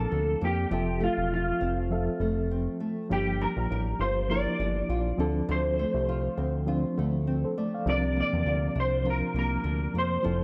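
Indie pop with a laid-back, dreamy mood at 101 BPM in 4/4, lightly swung on the 16ths and moving through C9sus4, Fmaj7, Gm7 and Dm7 in this short cut from a longer piece. A dark, slightly broken-up electric guitar through a small old amp carries the picked melody up front with ensemble chorus and tape echo, while a fingerpicked flamenco guitar with analog chorus and vibrato and a reedy, worn, slightly out-of-tune electric piano with fast tremolo and cassette-tape grit fill in the accompaniment. Underneath sits a fat, detuned analog bass with a moving notch, mellow and up front, and the whole is set in light reverb and digital ambience.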